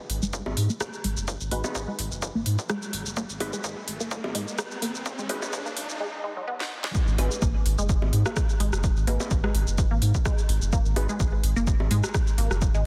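A dense, heavily limited mix with light reverb carries this hypnotic, quirky minimal techno excerpt at 127 BPM in G# minor, where a punchy, up-front analog kick, a thick saturated sine sub bass with sidechain pumping, a layered garage kit with a cracking snare and crisp hats, and tape-toned electronic bongos and rim click support a juicy, squelchy resonant blip pluck riff through phaser and delay, while a muted, evolving dub chord stab with a moving notch sits dark in the background, an electronic riser builds until 6.0 seconds and a filter sweep until 6.9 seconds, and a brief drum fill leads into the drop at 6.9 seconds.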